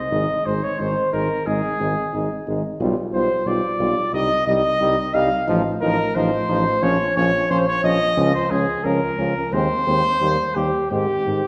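Opening with trumpet and flugelhorn together, this stately, triumphant classical brass quintet excerpt in Ab major moves at 89 BPM in a straight 4/4, the mellow, punchy, distant trumpet carrying the melody up front over the smooth-topped flugelhorn's second line, a roomy French horn with light vibrato and a close-miked, soft-attacked trombone filling the accompaniment in the background, and an up-front bass trombone with light vibrato anchoring the low end, all in a wet church or concert hall reverb as the chords travel through G7/B, Cm, F7/A and Bbm before passing through Eb and settling on Ab at 10.9 seconds.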